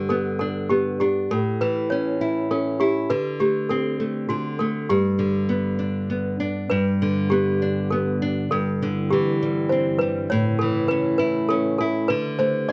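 A toy piano and a nylon-string guitar open this gentle, tender children's lullaby together, moving in an unhurried 3/4 at 100 BPM in G major. The toy piano carries the melody with a clanky, bell-like tone from its wooden hammers, slightly out of tune yet soft and airy, while the fingerpicked nylon-string guitar sits small and up front, its fresh strings catching the occasional finger squeak. The opening phrase passes through G, A and D5 chords before returning to G, and at 6.7 seconds the phrase begins again as a warbly, tape-like pad slips in behind the other two. This pad holds sustained chords with a slow attack and long release, sounding dark, lo-fi and nostalgic, its detuned wave-folded tone thickened by chorus and its own reverb, and it stays in the background. The second pass colours the harmony with Cadd9/G and A before pausing on Dsus4 at 12.1 seconds, as this short cut from a longer piece ends at 12.7 seconds. 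Close, detailed microphones and a light reverb keep the small ensemble intimate.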